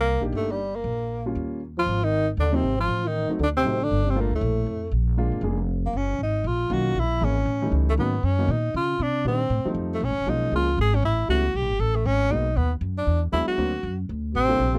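Swung eighths drive this fast small-group jazz piece at 236 BPM in 4/4, with a cool, late-night mood in a fragment cut from a longer performance. The upright bass sits up front, its pizzicato tone woody and warm as it plays low under the harmony. A breathy tenor saxophone carries the melody, also up front, playing in a soft-attack subtone with vibrato and scooped notes in a solo jazz manner. A warm grand piano supplies accompaniment behind them, while a dark, punchy trombone with light vibrato and a smooth top adds a forceful second line from 1.8 to 4.9 seconds and returns briefly at 14.3 seconds. The harmony moves restlessly through rich extended and altered chords such as Cm9, D7b9, A7#11 and Daug7 before settling on Gm9. The sound is dry and close, with little reverb, in the manner of a 1970s studio session.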